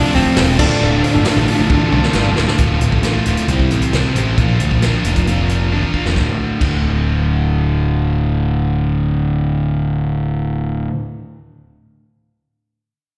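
This classic rock excerpt in D minor moves at 134 BPM in a straight 4/4, with a brooding, gritty mood. Up front, a crunchy, double-tracked overdriven guitar carries the picked riff throughout, and a round, dark fuzz bass with punchy drive sits beside it. In the opening seconds, a bright, slightly broken-up slide guitar with digital delay plays a short melody. A very quiet second overdriven guitar, an intimate piano with audible action noise, a shouting tonewheel organ turning through a slow rotary speaker, and crisp group handclaps fill out this opening, and all of them drop away by 2.6 seconds. A vintage kit with a punchy kick and rolled-off top plays until 6.7 seconds, with drum fills along the way. The harmony moves from F and Dm through C and Bb before settling on a D5 power chord, all heard through a small room and the echo of a live venue's PA.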